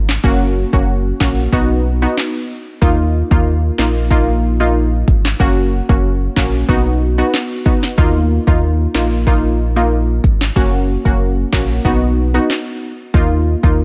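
Dancehall in Eb minor at 93 BPM, this bouncy, sultry clip cut from a longer piece sets a round, dark analog bass with a deep sawtooth-and-sine body under an electronic afro-pop kit of deep kick, sharp snare and handclaps, while a detuned analog pluck with a noise layer, filter sweep, chorus and sidechain pumping enters at 0.2 seconds to cycle through Gb, B and Ebsus2, all kept up front and dry.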